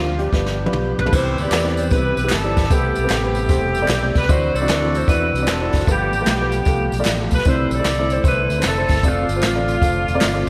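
A big arena sound with lush hall reverb frames this soulful, hopeful uptempo gospel excerpt at 152 BPM in C major, swung in 4/4. An up-front saxophone section carries the melody with light vibrato and slapback echo, over a dark, woody upright piano, a soft, flute-like tonewheel organ turning through a slow rotary speaker in the background, and a round, punchy fingered electric bass; a very quiet, intimate concert grand piano touches the melody only until 0.9 seconds. A brush drum kit with a boomy kick opens with a fill from 0.3 seconds, and compressed, saturated tambourine and handclaps join at 1.1 seconds as the chords move from Cmaj7 through Am9, D9 and G9 toward C69 and F6.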